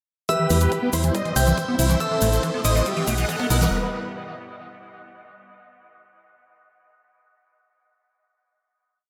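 Euphoric and emotional, this short uplifting trance piece in E harmonic minor runs at 140 BPM as a single build, moving through Em, C, Am and Em/B while a huge, detuned supersaw lead carries an up-front repeating riff in thirds and sixths under a filter sweep, joined by a glassy FM bell riff in octaves and a lush, chorused unison pad in the background. A squelchy, resonant acid bass runs a 16-step sequence with its own filter sweep, while a round, dark FM bass plays off-beat notes up front, and both pump against a four-on-the-floor kick that sits back in a tape-warm blend with programmed hats and a grainy hand-played shaker. A riser enters at 1.9 seconds and a drum fill begins at 2.0 seconds, pushing the build to its close within a moderate digital room reverb.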